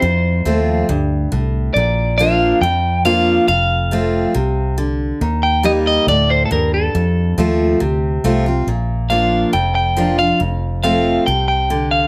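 An easygoing, sunny stretch of honky-tonk and classic country in Bb major at 139 BPM opens at once with a twangy, slightly broken-up electric guitar carrying the melody over a bright, full-bodied picked steel-string acoustic guitar and a round, dark, foam-muted vintage electric bass. The picked, scooped lead sits in plate reverb, while the chords move among F, Bb and Eb in a moderate studio room. At 8.7 seconds a new section begins with a clean electric guitar solo that runs until the cut at 12.1 seconds.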